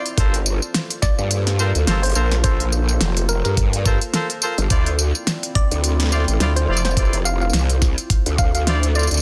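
Glitch hop at 106 BPM with swung sixteenths, this playful, swaggering drop is cut from a longer piece and moves from Gm11 to Dm9 at 4.7 seconds. An up-front, growling bass with a detuned, saturated wobble and a knocking electronic kick lead the dense, heavily limited mix, joined by a pop drum kit with a fat, softly clipped snare, crisp hats and tambourine. Punchy, bright horn stabs carry 12-bit sampler grit, tape echo and sidechain pumping, while a woody wave-folded pluck melody and a deep, moody analog pad with chorus, phaser and pumping sit in the background.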